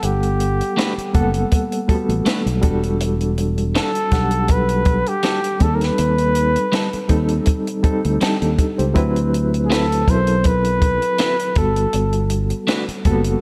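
A close-miked flugelhorn leads this lush 1970s-style soul excerpt, singing a jazz-inflected melody with vibrato between G4 and C5 at an easy 81 BPM in G major, with a light sixteenth-note swing. Beneath it, a reedy electric piano with a fast tremolo heard through its built-in speakers spreads clean chords across Gmaj9, Em11, Cm6/Eb and D13 before settling back on Gmaj9. A fingered electric bass sits up front with a dark, round, direct tone, and a compact cocktail drum kit keeps time on hi-hat, a tight kick and a high-tuned snare, all dry and natural. From 0.8 seconds a picked electric guitar, compressed and just at the edge of break-up with a subtle chorus, adds a riff set lower in the mix. A small room ambience wraps the whole group in a warm glow.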